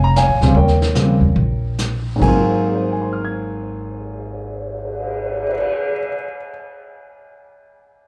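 An intimate, up-front grand piano with audible action noise and a slapback echo opens this relaxed, swinging jazz piano trio clip alongside a woody pizzicato upright bass, with a vintage brush kit of dark cymbals and a punchy kick joining at 0.2 s, the 136-156 BPM tempo slowing down through the first 2.2 s as Bbm7 and Eb7 move to Ab13 in Ab mixolydian, heard live through a club PA with moderate reverb.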